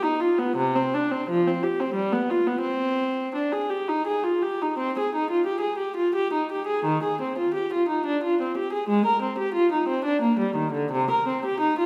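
Solemn and flowing, this brief fragment of a baroque-style suite movement in C minor features a lone bowed viola with a nasal, reedy gut-string tone and airy bow, played up front in period style between C3 and Bb4 at a rubato 87 BPM in 3/4, tuned to A4 = 438 Hz, as a wet recital hall reverb blooms around it and a new section begins at 4.8 seconds.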